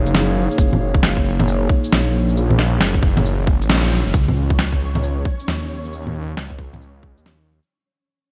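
A menacing, saturated detuned saw bass sits up front with sidechain pumping, under a deep, moody analog pad with lush chorus moving from Ebm7 to Dbsus2 in this melancholic, ghostly future garage passage at 135 BPM with a swung 16th feel. A tight, tape-warm electronic kick and a muffled, pitched-down, sampler-style kit of shaker, snare and bongos sit close in a studio reverb. A flickering granular texture drifts in at 4.4 seconds as the music fades out from 4.1 seconds, all wrapped in vinyl crackle and light digital ambience.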